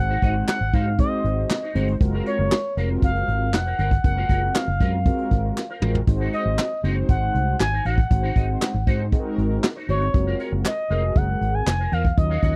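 An expressive, smooth synth lead carries the melody up front, its soft-attack sawtooth-and-triangle tone shaded with vibrato, chorus and slapback echo, over mellow, detuned synth brass with filter sweeps and a round, foam-muted fingered bass in this late-night, funky early-eighties boogie funk excerpt at 118 BPM. A clean, picked electric guitar riff through an envelope filter and ensemble chorus sits low in the mix, while a dark, brushed drum kit with a punchy kick and a group handclap with a hollow tone keep a straight 4/4 pulse, the drums breaking into a fill at 5.6 seconds. The harmony alternates between Ab7 and Gbmaj9#11, captured in a dry, close 1970s-style studio sound.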